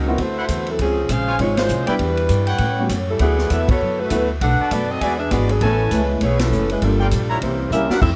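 Energetic, joyful big band swing at 199 BPM in A major, led by a smooth, tight saxophone section up front over woody, thumpy pizzicato upright bass, with clear trumpet stabs, a warm upright piano in the background and a very quiet picked steel-string acoustic guitar, a punchy swinging drum kit driving band accents, and a soft-edged trombone section entering at 7.4 s just before a drum fill at 7.7 s, all in light reverb with close, detailed miking.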